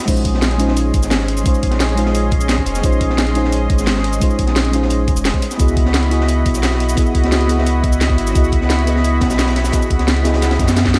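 Opening on a round, dark FM electric piano with chorus, phaser and analog delay over a lush, detuned unison pad and a gritty, saturated breakbeat kit in the background, this dreamy, melancholic liquid drum and bass excerpt at 174 BPM in Bb minor soon adds a deep sine sub bass up front, a knocking electronic kick, and a layered kit with cracking snare, bright hats, cabasa and crash, moving from Bbm11 to Dbm11 at 5.4 seconds before a drum fill at 10.4 seconds, all in light reverb.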